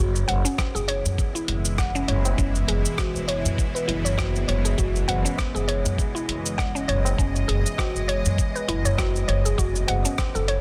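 This excerpt from a longer organic downtempo piece moves at 100 BPM in 4/4, with a gentle 16th-note swing that gives it a loose, unhurried sway and a mystical, earthy mood. The upright bass sits up front from the start, its pizzicato gut strings sounding woody and dark, while a compressed, thumpy electronic kick anchors the low end. A gritty, dusty soul-style kit adds hi-hat, rim click and shaker with soft clipping on the snare, and a low-tuned, ringing tabla sits in the background in a small room. A round, mellow mallet-like FM pluck plays arpeggios through chorus and digital delay, and from 0.9 seconds a tense, bright, string-like sawtooth drone holds sustained chords with slow attack, vibrato, phaser, its own reverb and sidechain pumping. The harmony rests on E over F# before turning to F#m7 at 9.6 seconds, all framed by light digital ambience and a dense, heavily limited modern master.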